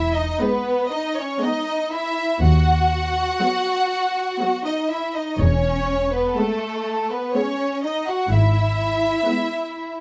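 A slow, serene string orchestra movement in E major at 61 BPM, in a rubato 3/4, opens with a smooth, warm violin melody up front over a focused, lush second violin line, expressive cellos in the background and up-front double basses, all bowed with vibrato and the low strings adding portamento. Distant, even violas enter at 0.4 s with rich accompaniment, and the cellos and basses stop at 9.1 s. This lyrical excerpt has a dark production with light reverb, its harmony moving from E through B/D# and back to E before reaching E/G#.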